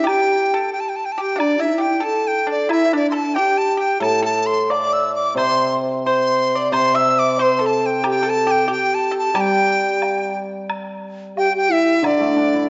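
Festive yet graceful, this short excerpt of Chinese traditional chamber music moves with a rubato 2/4 feel. It is led by a breathy, buzzing dizi up front, with vibrato and a soft attack, over a mellow, hollow low xiao playing a second line. A dry, percussive pipa shares that second line until 10.3 seconds, a very quiet woodblock ticks in the background, and a shimmering, ringing hammered dulcimer enters at 4.0 seconds with accompaniment before a brief new section begins at 10.7 seconds. The whole ensemble sits in a spacious, wet reverb and carries the dull, warbling pitch drift of worn old cassette tape.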